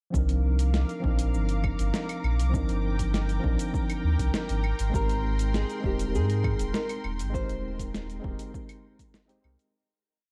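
A dark, lightly reverberant mix carries this wistful, smooth sunset chillout piece in C minor at 100 BPM. A worn, slightly out-of-tune tine electric piano with overdrive, tape echo and shimmer reverb plays held chords with syncopated pushes over Cm11 and Abmaj9, while a lush, detuned unison pad warbles through chorus and a deep, round sub bass sits up front with a syncopated riff. A gritty sampler-style kit of claves, closed hi-hat, shaker and snare lays down a light lounge beat over a soft, overdriven electronic kick in the background, and an airy, wind-like noise texture holds a high note from 0.9 s. A fingerpicked nylon-string guitar, finger squeak audible, enters at 5.0 s with a classical motif before the fade-out begins at 6.5 s.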